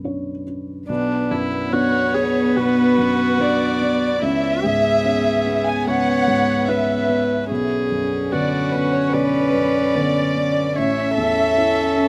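Neoclassical piano and strings in B dorian, this melancholic, fragile excerpt moves at a rubato 73 BPM in 4/4, cut from a longer piece. A felt-muted upright piano opens alone, its dark, mellow tone thick with felt and carrying audible action noise, sitting up front as accompaniment. At 0.9 seconds a single cello joins with a close second line played sul tasto with light vibrato, alongside a rich, floating viola with an airy bow and a very quiet, reedy pedal harmonium breathing sustained chords beneath. The chamber violin section takes the melody from 1.7 seconds, bowed sul tasto with vibrato and a soft attack, touched by tape echo. Harmony drifts from Bmadd9 through C#m7 and back before settling on A, all within a light reverb and the rough sound of a home demo mix.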